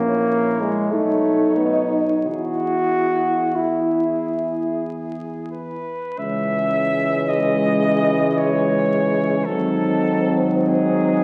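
Heard through the crackle of a very old 78 rpm record and a wet concert hall reverb, this slow, lyrical hymn-like brass band piece in 3/4 moves with rubato at 41-56 BPM from E major into C# minor at 6.2 s, with a mellow cornet singing the melody with light vibrato over a tight French horn section on the second line, a soft-attacked euphonium with vibrato set in the background, a warm trombone up front in the accompaniment, and a smooth-topped tuba on the bass, in a fragment cut from a longer piece.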